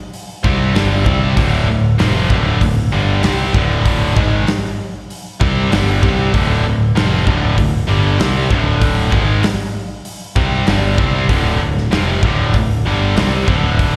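Heard as a live gig through the venue's PA with recital-hall reverb, this driving, menacing hard rock excerpt in D minor at 97 BPM pairs a big, dark rock kit of punchy kick, medium-tuned snare and hi-hat, entering at 0.1 seconds, with two tight, bright distorted guitars carrying a picked riff through slapback echo and an up-front picked electric bass, which join at 0.4 seconds, all holding on a single D minor chord until the cut at 14.0 seconds.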